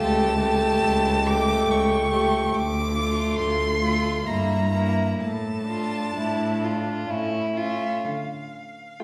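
A string quartet opens together on an A7/C# chord, settling into a slow, rubato romantic movement in D minor and 3/4 time at 62-73 BPM, its mood melancholic and elegiac. The first violin carries the melody high above, its rich tone shaped by vibrato, soft attacks and expressive portamento. Beneath it, the second violin plays a dark, intimate line sul tasto with light vibrato, while the viola's airy bowing fills in the accompaniment close by. The cello sits up front with a warm, focused bass and generous vibrato, moving through Dm, Edim/G and Dm/A before an A chord resolves to Dm at 8.1 seconds. The cello stops at 8.8 seconds, just before the upper strings fall silent at 9.0 seconds, all heard in the lingering reverb of a recital hall in this fragment cut from a longer piece.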